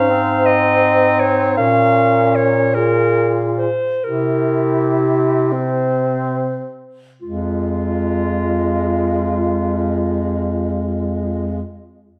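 Set in a moderate recital-hall reverb, this yearning, melancholic excerpt from a longer classical piece for single-reed quartet moves in a rubato 12/8 at 33-55 BPM in F minor, tuned to A4 = 435 Hz, and slows over its first 7.2 seconds as the harmony passes from Ab through Bbm and C7 to Fm. The bright clarinet carries the melody up front, alongside the dark alto saxophone's softly attacked, lightly vibrato second line. Beneath them, the mellow tenor saxophone sounds distant and roomy with vibrato in its accompaniment, while the clear bass clarinet holds the bass up front.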